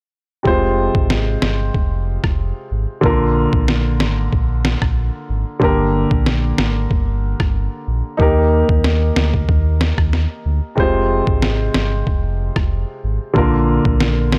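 Sultry and bouncy, this excerpt from a longer dancehall piece moves at 93 BPM in a straight 4/4, set in F dorian and tuned slightly sharp to A4 = 441 Hz. A warm baby grand piano carries the accompaniment from 0.4 s, sitting present and polished up front with sidechain pumping. From 0.5 s a deep, full sine sub bass with an added octave holds sustained notes with a fast attack, while a lo-fi sampler-style drum kit delivers a thumpy kick, rim click and medium-tuned snare that sound pitched down, muffled, compressed and overdriven. The harmony cycles through Fm, Bb, Gm and Eb, returning to Fm and Bb before the cut at 14.4 s. The mix is dry and gritty, with the character of hardware recording and transformer saturation, and keeps all three parts up front.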